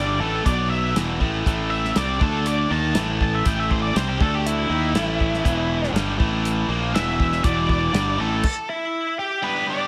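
Brooding and driving, this classic rock passage in a straight 4/4 is cut from a longer piece and centres on a lead guitar solo. An octave-fuzz lead guitar, dark and up front, carries the melody from the start, set against a biting overdriven guitar riff that sits equally forward. A tight, bright distorted guitar adds a second riff over a growly overdriven fingered bass, while a damped 70s drum kit enters at 0.5 seconds with dry, dark cymbals, a medium-tuned snare, a tight kick and a rolled-off top. The chords shift among A minor and power chords on B, E, D and A until a stop at 8.4 seconds, where the bass and the tight guitar fall silent and the drums stop soon after, leaving the lead and the biting guitar to ring on. Light studio reverb lends a modest sense of room.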